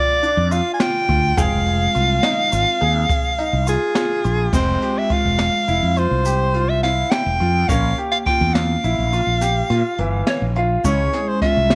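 Driving in 11/8 at 209 BPM counted in eighths with a straight feel, this intricate progressive instrumental excerpt opens in F minor and turns to F harmonic minor at 4.5 s, moving through Bb, Fmadd9, Fm, Bbm and Dbm. A breathy soprano saxophone carries the melody up front with a soft attack and vibrato in a jazz style, while a double-tracked vintage hollow-body jazz guitar, clean, picked and compressed with a dark tone, supplies accompaniment and adds a fill from 10.0 to 10.8 s. A bright baby grand piano spins brilliant, open arpeggios in its middle register. The jazz brush drum kit enters at 0.2 s with a small-room sound, dark cymbals, a high-tuned snare and a boomy kick, its tone smooth and warm with a rolled-off top. A grainy egg shaker sits in the background from the same moment, and a mellow fretless electric bass, round and direct, arrives at 0.4 s to anchor the low end up front, all under a light reverb.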